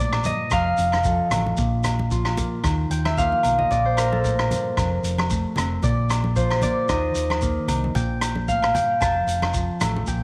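A fingerpicked Celtic harp sits up front, carrying a ringing solo of arpeggios across the whole clip with a touch of slapback echo on its notes. This is a joyful, danceable highlife guitar band piece in Bb major at 113 BPM in 4/4, with a light swing on the sixteenths, and the short clip is cut from a longer piece. Beneath the harp, a mellow, clean electric guitar provides dark accompaniment, while a round, hollow-body short-scale electric bass adds an amped low end. A vintage acoustic drum kit with a punchy kick, rolled-off top, hi-hat and rim click enters at 0.1 seconds and drops in a brief fill around 3.3 seconds. Ringing agogo bells and hard-hand congas sit in the background, joined by a grainy, band-limited shekere, adding percussive colour. The harmony cycles around Bb, F and Ebsus2, and the whole band sits in a light, small-room reverb.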